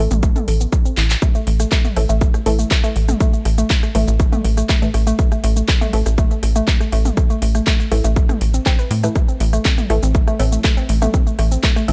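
Melodic techno at 121 BPM in A minor, dramatic and melancholic, cut from a longer piece and held in one section over a dry, gritty hardware sound with transformer saturation and digital ambience. A punchy, up-front electronic kick and a house kit with metallic hats, handclaps, rim click, shaker and toms carry a drum fill at 1.0 seconds, while a tight, driving sawtooth sequencer bass pumps against the kick. Above it, a woody, wave-folded pluck spins chorused, tape-echoed arpeggios with a dark, evolving filter sweep, and a muted, detuned dub chord stab sits deep in the background with phaser and tape echo, punching short, fast-decaying hits on an A5 chord.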